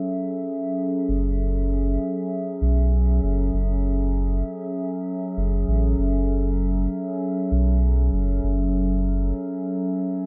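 Ambient dub at 98 BPM in F# minor, meditative and spacious, resting on a single F#m7 chord in this short excerpt cut from a longer piece. A warbling, nostalgic, lo-fi pad holds sustained chords from the start, its slow attack, long release, chorus and built-in reverb giving it a dark, tape-like haze. At 1.1 seconds a deep, round sub bass enters up front, sustaining low notes until 9.3 seconds, all set in a light reverb.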